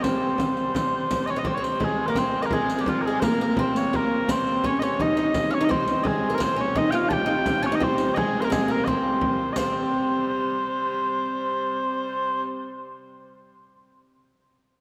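A straight, steady triple-time pulse drives this medieval dance, cut from a longer piece, with a mysterious, propulsive mood. Small bagpipes carry the melody up front with a mellow, sweet, continuous tone and vibrato. A fretless oud, plucked with a plectrum, plays a second line, its double strings sounding bright and woody. Beneath them, a single wheel-bowed, keyed hurdy-gurdy holds a clear, nasal drone with an airy bow in the background. A deep, large frame drum and a riq with dark jingles struck by hard hands supply the percussion, the riq sitting further back, and both drop out at 9.7 s. The ensemble rings in a wet church reverb, and the oud is the last to sound, stopping at 13.1 s.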